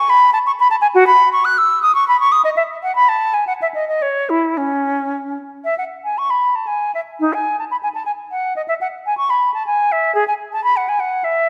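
Serene and radiant, this excerpt from a classical, baroque-style fantasia in C# minor features an unaccompanied concert flute, airy and up front with vibrato, crisp attacks and rolled-off highs, moving in a rubato 3/4 at roughly 107-126 BPM across a range from C#4 to F#6 for 11.5 seconds, set in a moderate recital hall reverb.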